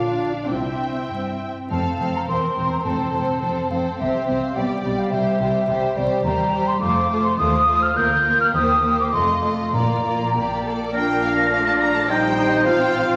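Graceful and lively, this quick classical-period movement for symphony orchestra moves in 2/4 at about 98-108 BPM with a rubato feel, settling into Bb major from 6.2 s. Rich, smooth violins carry the melody over a second violin line, an even viola accompaniment, and a bass of focused cellos and soft double basses in the background, while a dark, distant clarinet adds a line at the start and close, and an up-front, hollow silver flute enters at 1.7 s with a pure, crisp-attacked voice. Timpani on medium mallets mark two brief moments, and from 10.9 s a vintage-toned oboe and a very quiet bassoon join, followed at 11.0 s by a mellow French horn section with sustained chords, all within a wet scoring-stage reverb and a layer of vinyl crackle in this cut from a longer piece.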